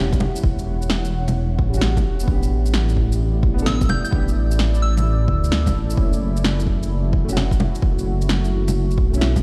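A rumbling, detuned sawtooth bass sits up front in this wistful, nocturnal future garage excerpt, its saturated low end pumping against the kick at 130 BPM in 4/4 with a 16th-note swing. Above it, a moody ambient pad with slow attack and long release holds sustained chords through Em69, A7sus4 and F#m7, thickened by chorus, its own reverb and a gritty 12-bit sampler texture, and it too pumps with the sidechain. A worn, woody upright piano with a boxy, slightly detuned tone and short sustain plays quiet accompaniment through tape echo. The punchy, overdriven kick plays with studio reverb, while a layered kit of shaker, bongos and fat snare rides up front with the same reverb, and the band hits an accent at 9.2 seconds. Between 3.7 and 5.3 seconds a soft, pure FM bell plays a brief high melody, shimmering with chorus, phaser and tape echo. The whole track sounds as if it were played through a big sound system in a bare stone room.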